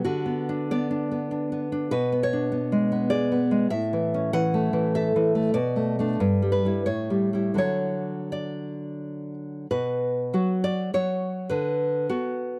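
A dry, close studio sound in a 1970s style frames this tender, romantic excerpt for solo nylon-string guitar, fingerpicked up front with bright, fresh strings in D major and a rubato 3/4 between 80 and 107 BPM, moving from Bm/D through A, Em7/G and A7 to D at 7.6 seconds before a second section opens on B5 at 9.7 seconds and returns to Bm/D.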